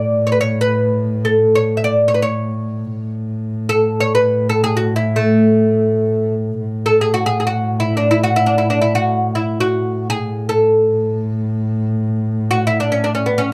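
This Persian modal ensemble piece unfolds in free time in dastgah mahur on A, with a stately, passionate mood. A bright, fretless oud carries the melody across a range from A3 to E5, its plectrum-plucked double strings sounding close and detailed. Beneath it, a single bowed double bass holds a dark drone on A2, its soft attack and vibrato giving the low end a woody depth. Both instruments sit up front and play throughout the 13.5 seconds, with the bass set lower in level than the oud. A light reverb surrounds the pair, and the opening material returns at 6.6 seconds in this passage cut from a longer performance.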